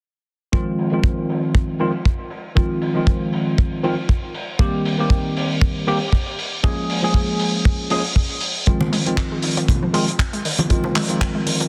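A dry, tight kick and a damped 70s kit with handclaps and rolled-off hi-hats set a swung 16th-note groove for this cosmic, groovy nu-disco at 118 BPM in F minor, with a filter sweep on the drums, while an up-front tine electric piano, worn, barky, slightly out of tune and lightly overdriven through a combo amp, carries the Fm7, Cm7 and Bbm7 chords, joined at 8.7 seconds by a round, detuned analog pluck playing arpeggios with sidechain pumping and tape echo and at 8.8 seconds by distant hard-hand congas in a large room, all in a dense, heavily limited master with light reverb.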